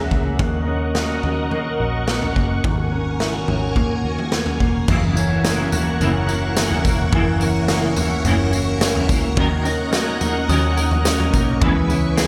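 A hazy, haunting piece of dream pop in a straight 4/4, cut from a longer piece, opens with shimmering vintage string-machine violins holding soft-attack sustained chords through ensemble chorus and a low-pass filter, while a mellow, dark electric guitar plays compressed, fingered arpeggios bathed in lush chorus and tape echo. Beneath them a vintage muted fingered bass sits round and punchy, its foam-muted tone dark and amped. A raw garage drum kit, saturated and gritty, stands up front with a punchy kick, a medium-tuned snare, crash cymbal, tambourine and toms ringing in a bright, pumping stone room. At 4.9 seconds the harmony moves from D#m7 and G#9sus4 to F#7 as a clean, scooped semi-hollow guitar joins with picked accompaniment colored by tremolo and ensemble chorus. A bell-like glockenspiel struck with soft plastic mallets rings faintly in the background at 5.2 and 10.5 seconds, trailed by tape echo, while the chords settle back through D#m7 to C#m7. 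Light reverb and a small-room ambience frame the whole mix.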